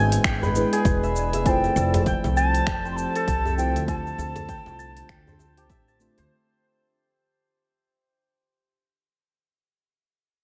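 Organic downtempo at 99 BPM with a meditative, swung 16th-note feel, this fading excerpt sets a breathy, reedy bansuri melody between 1.5 and 5.7 seconds over shimmering hammered santur arpeggios with delay, muted felt-like synth keys, a warbling lo-fi tape pad with chorus and reverb, and a woody, growly pizzicato upright bass that pumps with the overdriven, deep electronic kick. Finger snaps, crisp hi-hat and shaker join a tight, cracking djembe with metal rattles in the background, over chords moving from E7/G# to Fmaj7 and Dm7 in a small room, until the santur rings on alone to 8.8 seconds.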